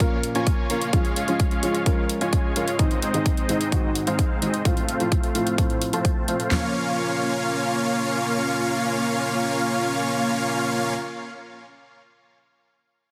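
A straight, driving pulse opens this powerful, anthemic slice of festival progressive house, with a big-room drum kit of punchy kick, huge snare, handclaps and toms, overdriven and placed up front, while a layered electronic hi-hat adds metallic shimmer from a small room. Carrying the riff is a dense, compressed supersaw, thick and airy with detuned sawtooth unison, a sub octave and a noise layer, pumping against the sidechain and passing through a filter sweep over the first 6.5 seconds before its delay trails on. Underneath, a felt-muted upright piano supplies soft, mellow, dark accompaniment that also pumps and echoes through its own digital delay. The drums and hi-hat drop out around 6.6 seconds, leaving synth and piano to hold the harmony as it returns to the home chord for the second section. A lush hall reverb surrounds the mix, and heavy multiband compression gives it a loud, radio-ready sheen in this excerpt cut from a longer track.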